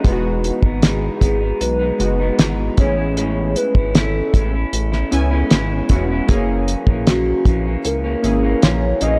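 Dreamy and laid-back, this short cut from a longer indie and bedroom pop piece moves through Emaj7, Amaj7 and F#7 in a straight 4/4 feel. A cloth-damped, thuddy drum kit sits up front with a fat snare and tight kick, under a glossy, saturated pulse-and-sawtooth synth bass, a slightly broken-up guitar through a small old amp with subtle chorus and warbly pitch drift, and round, detuned analog keys with a filter sweep. From 0.8 seconds a mellow, wave-folded nostalgic lead enters with vibrato, analog chorus and analog delay, all captured in a dry, gritty hardware recording with little reverb.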